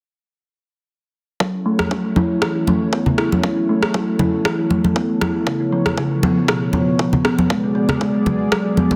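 Afro house at 118 BPM in F# minor, with a light swing on the sixteenths and an earthy, hypnotic mood, cut from a longer piece. At 1.4 seconds a woody, hollow-toned kalimba enters up front with ringing arpeggios, its mellow pluck darkened by a low-pass filter, repeated by a digital delay, pumping against the sidechain and moving through a filter sweep. Alongside it a smooth, detuned sawtooth pad holds soft-attack chords with chorus and sidechain pumping, also swept by a filter, moving from F#m7 to C#7b13 at 5.5 seconds and G#m7b5 at 7.5. A deep, overdriven electronic kick sits prominently in the mix, joined shortly after by a gritty layered rim click, both placed in studio reverb. Close, dry congas played with hard hands drive the groove up front, and the whole is bound by a moderate plate reverb and a dense, heavily limited modern master.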